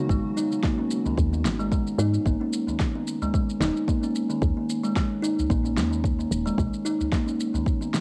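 Earthy and mystical, this short excerpt of organic downtempo moves at 111 BPM in G# minor with a gentle 16th-note swing. A dark, hollow-bodied kalimba carries the arpeggios up front, its ringing tone colored by cassette tape and analog delay. Beneath it, a soft, round FM bass with a woody, decaying character holds down the low end until about 6.7 seconds. An up-front electronic kick with a deep, tape-softened thump anchors the groove alongside a layered shaker and fat snare, while an acoustic udu adds deep, band-limited percussion from 1.1 seconds. The harmony moves from G#5 to D#sus4 at 4.4 seconds before the chords fall away at 6.6 seconds, all set in light reverb with the intimate feel of a home cassette recording.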